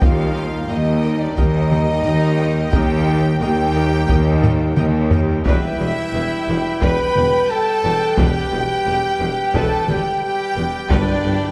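A dark, dramatic cinematic orchestral cue at 88 BPM, this cut from a longer piece moves from Eb to E minor at 5.5 seconds and lands on G at 10.9 seconds. Close, dry taiko drums struck with hard sticks drive it, with a drum fill at 4.4 seconds, while a warm French horn section and thick organ foundations hold sustained chords over distant bowed cellos, a roomy tuba and double basses. A lush symphonic violin melody sits back in the mix beside an airy, hollow flute and smooth studio violins on a second line, very quiet violas accompany, and round, soft-mallet timpani enter only at 10.9 seconds, all in a moderate scoring-stage reverb.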